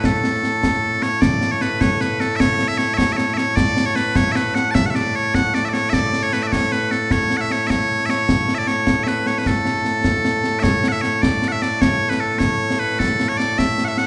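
Captured in a church or concert hall with a moderate recital-hall reverb and a top end that rolls off above 10.4 kHz, this short cut from a longer piece of Scottish pipe music in 6/8 feels proud and ceremonial. Loud bagpipes carry the melody from start to finish, bright, piercing and continuous, sitting up front as the solo voice across a range from A2 to A5. Concert snare and bass drum, acoustic with dark cymbals and a small-room character, play beneath the pipes throughout, and a new section of the tune arrives at 10.6 seconds.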